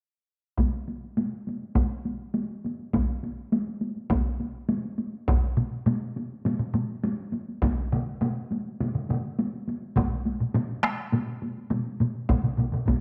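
Japanese traditional taiko drum ensemble music at 102 BPM in a straight 4/4, ceremonial and driving, with two groups of taiko struck with heavy sticks sounding up front from 0.6 seconds, one in a live room and one close and dry, joined by a third in a small room at 5.6 seconds and a fourth, also close and dry, at 7.9 seconds, all within a wet echo-chamber reverb, in what is cut from a longer piece.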